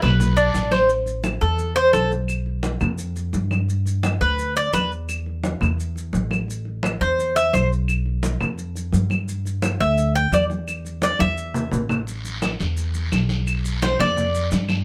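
Latin Cuban son in the guajira style, this nostalgic, warm excerpt in A minor moves at a brisk 172 BPM in straight 4/4. A bright, metallic Cuban tres sits up front, playing picked arpeggios on its doubled strings in short bursts as it solos over A5, Fsus2, G and Am, reaching Bdim at 13.5 seconds. Underneath, a woody, thumpy pizzicato upright bass, hard-handed damped congas, vintage claves and grainy, compressed maracas play throughout, while a raspy, distant guiro opens the passage and returns from 12.1 seconds, just after a drum fill at 11.2 seconds, all wrapped in light reverb.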